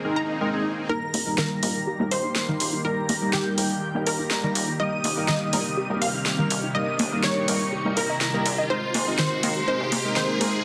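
Progressive house at 123 BPM in Eb major, expansive and euphoric, where a swell gives way at 0.9 s to a long build-up with a riser and filter sweeps on the glassy wavetable arpeggios, the retro chorused polysynth stabs and the lush supersaw pad chords, while a punchy detuned unison pluck carries the melody, an airy, dreamy lead with vibrato and portamento adds a high second line, a funky plucky analog bass and an up-front deep house kit with a fat snare enter at 1.1 s, all within a lush hall reverb and a dense, heavily limited modern master.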